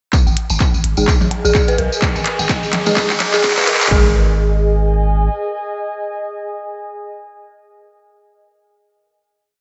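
A dry, punchy analog kick drives a swung four-on-the-floor pulse in this short, complete minimal techno piece, joined by overdriven clicky hats and claps up front, close and jingly hand-played tambourine sixteenths, and distant woodblock and conga blips with delay that sketch a cross rhythm. A deep sine sub bass with a pitch-drop attack rolls out a staccato groove, pumping against the kick, while an eerie, inharmonic FM bell repeats a 16-step sequence through chorus, a low-pass filter and analog delay. Sparse, crisp wavetable chord stabs echo in the background, moving one shape in parallel, and a nostalgic, warbling tape-like pad with chorus, phaser and sidechain pumping drifts through slowly shifting chords. The whole opening works as a build with a drum fill and filter sweeps on the bell and stabs, topped by a riser arriving at 1.7 seconds, before a final chord lands at 3.9 seconds and the pad lingers until 8.5 seconds. 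The mood is cool and hypnotic, set in a dreamy, reverb-soaked hall sound with softened top end.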